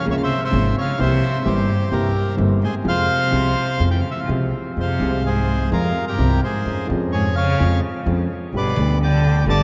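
Drenched in cathedral reverb that stretches into a vast, echoing space, this dramatic, sultry tango excerpt in F harmonic minor moves at 128 BPM in 4/4 with a rubato feel, passing from Db6 and C7 through Fm and Db/F to G. A reedy, full bandoneon carries the melody, close-miked and up front. Beneath it, a single bowed cello adds a rich, nasal second line with vibrato, a dark, mellow concert grand piano supplies boxy accompaniment with deep bass, and a woody, growly pizzicato upright bass on steel strings enters at 0.1 seconds.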